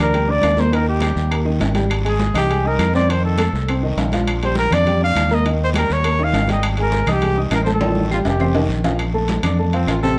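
Breathy trumpet, dark grand piano and a round, fingered electric bass open this danceable, sophisticated Afro-Cuban jazz clip together, with congas, guiro and timbales joining at 0.1 seconds and claves at 0.4 seconds. The trumpet sits up front with vibrato in a jazz style, carrying the melody over the piano's mellow, smooth, vintage-sounding chords, whose notes have short sustain. The bass is direct and amped and placed prominently beneath, while the congas ring in the background with a compressed, saturated edge. Metal-shell timbales, caught in a small room, sit among the percussion; the guiro rasps close but at the back, and the woody claves are dry and very quiet. A drum fill arrives at 7.8 seconds, and then the trumpet takes a solo as the harmony settles on Bbmaj9, the ensemble set in a large studio's moderate reverb and a warm production, cut from a longer piece.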